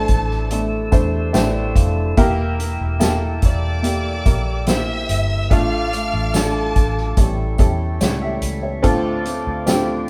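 Melancholic and heartbroken, this pop ballad moves at a slow 72 BPM in D minor, a short cut from a longer piece played by a band live in a moderately reverberant stone room. A lush, expressive violin section carries the bowed melody with vibrato until 7.2 seconds. Beneath it, a worn, woody, slightly detuned upright piano sits up front, adding a fill from 0.5 to 2.2 seconds. A mellow woodwind section holds soft-attack sustained chords, and a fingerpicked steel-string acoustic guitar with bright fresh strings plays arpeggios in the background. A dark, round, foam-muted vintage electric bass anchors the low end up front, while a soft-mallet drum kit with a punchy kick and medium-tuned snare sounds distant and roomy, joined by a jingly, close and dry tambourine. The harmony drifts from Asus4 through Edim and Dm/A to A7, settling on Dm7.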